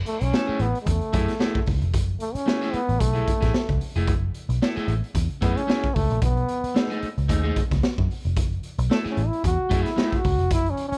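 Funk at 112 BPM in F# dorian with a hypnotic, funky sixteenth-note swing, this 11-second cut is led by a bright, up-front trombone soloing with light vibrato over a gritty, saturated garage drum kit with a boomy kick and high-tuned snare in a small pumping room, a dark, round, foam-muted picked bass, and a twangy, slightly broken-up electric guitar comping through F#m9 and B13 chords, all in a dry sound.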